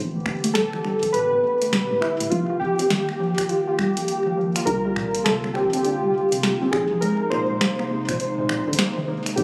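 Heard through a phone in the room and bathed in a lush digital hall reverb, this compressed IDM fragment at 102 BPM moves with a swung 16th-note feel and an intricate, cerebral mood over drifting sus4 chords. A hollow, flute-like pad holds sustained chords with chorus and sidechain pumping, while a woody, round FM bass sits low in the background and a dusty, ring-modulated pluck spins chorused arpeggios through digital delay from 0.1 seconds. The booming, tape-warm analog drum machine enters up front at 0.3 seconds with finger snaps, metallic hi-hats and a tonal snare over a deep electronic kick, and warbling, nostalgic lo-fi synth keys carry the melody from 0.5 seconds with chorus and delay.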